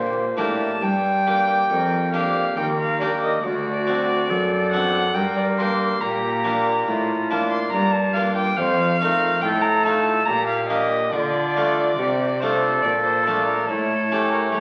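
Heard through the crackle of a very old 78 rpm record and the wet reverb of a recital hall, this solemn, flowing baroque-style sonata movement in G minor moves at 70 BPM in 3/4, tuned to A4 = 436 Hz and cut from a longer piece. A pure, tongued concert flute carries the melody over a close, round harpsichord and a rich, bowed gut-string cello on the bass. A nasal, reedy period-style violin joins at 0.4 s with a second line, as the harmony turns from G minor toward B-flat and closes on an A7.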